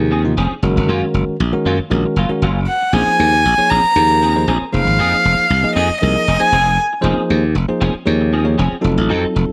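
A bowed violin carries the melody from 2.7 to 6.8 seconds, its sul tasto tone soft in attack and airy, with light vibrato and a slapback echo that keeps the single player intimate and close at the front of the mix. Underneath, a glassy slap bass sits up front, growly and punchy, driving this funky, intense jazz passage in straight 4/4. A bell-like tine electric piano supplies bright, clean accompaniment through the minor ninth and seventh chords, closing on a tense dominant with a flat ninth. A clean electric guitar adds picked, compressed stabs treated with an ensemble chorus, sitting quieter than the other parts. Light reverb surrounds the group, and the passage is cut from a longer piece.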